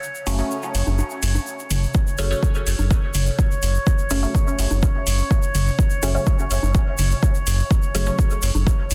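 A dry, dense and heavily limited mix opens this nocturnal, meditative dub techno excerpt, where a glassy, drifting harmonics texture with chorus and its own reverb sits over a grainy egg shaker, then a round, dark analog bass, overdriven metallic hi-hats and muted, detuned chord stabs with phaser and dub echo arrive at 0.3 s. Dry electronic bongos and toms with dub echo join in the background from 0.9 s, and the sidechain pumping on the bass, stabs, texture and percussion gives the groove its breathing motion. At 1.9 s the deep, overdriven kick lands up front, ending the opening break and anchoring the F#m groove.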